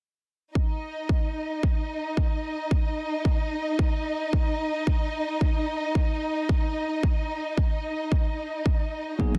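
Groovy and sleek, this short excerpt of nu-disco rides a lightly swung 4/4 feel, with a punchy, layered electronic kick up front under dark, close studio strings that hold sustained chords with expressive vibrato and portamento, pumping against the sidechain. Just before the cut at 9.4 seconds, a clean, tine-toned electric piano and hard-handed acoustic congas slip in briefly. The mix carries light reverb and studio ambience inside a dense, heavily limited modern master.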